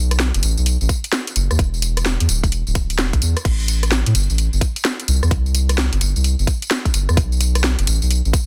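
This UK garage clip in a two-step style moves at 129 BPM with swung 16ths, bouncy yet moody, and is cut from a longer piece. A deep, round, soft sub bass with a fast attack and sustained tone sits up front. An overdriven electronic drum kit of crash, hi-hat, rim click, tambourine and a cracking snare comes in alongside it, and a tight, layered kick joins at 0.9 seconds, all set in digital ambience with a dense, heavily limited modern master.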